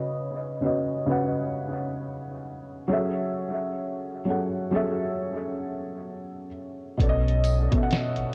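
Lo-fi hip hop at 66 BPM in F# dorian, reflective and hazy, opening on a felt-muted upright piano that sounds soft, dark and intimate through cassette tape, analog delay and a low-pass filter sweep over chords moving from C#9sus4 to F#m7. At 7.0 seconds the piano lands on B7 as a compressed, pitched-down sampler drum kit with a thumpy kick, fat snare and 12-bit grit arrives alongside a deep, sustained sine sub bass, while a jingly tambourine sits in the background briefly. Spring reverb and heavy echo give the mix a tape-worn, hazy cast in this short cut from a longer piece.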